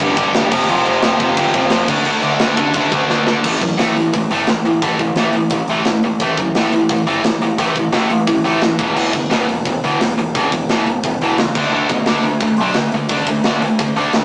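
A double-tracked, distorted guitar riff opens this rowdy punk rock excerpt, joined from the first beat by a growling, punchy overdriven picked bass and a polished acoustic metal drum kit with bright cymbals, a medium-tuned snare and a tight kick, the guitar and drums sitting up front. A short drum fill at 3.1 seconds pushes the power chords from G5, F5 and D5 into a longer stretch on A5, E5 and D5. The rough rehearsal-room recording adds saturation, a small-speaker sound and moderate studio reverb to this rebellious cut.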